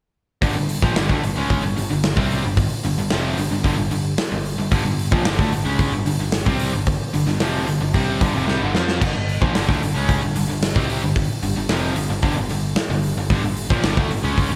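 Heard through light reverb and small-room ambience, this driving, menacing hard rock cut at 112 BPM in 4/4 sits on G minor, with two overdriven electric guitars (one warm, the other bright and double-tracked) and a tight distorted guitar with slapback echo each playing the riff in the background from 0.4 s, a growly, foam-muted picked electric bass underneath, and an up-front big rock drum kit with a tight kick, medium-tuned snare and rolled-off top that breaks into a fill at 8.5 s.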